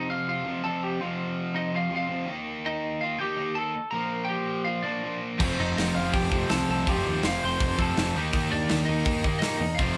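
Punk rock, energetic and rowdy, cut from a longer piece: a twangy, slightly broken-up lead guitar carries the melody up front over a bright, compressed distorted guitar riff, until at 5.4 s the band comes in with an overdriven stack guitar in the background, a double-tracked high-gain guitar, a growly fuzz bass and a tight metal drum kit of crash, hi-hat, kick and snare, all played live in one room with light reverb over an F5, Eb, Bb, F, Eb progression.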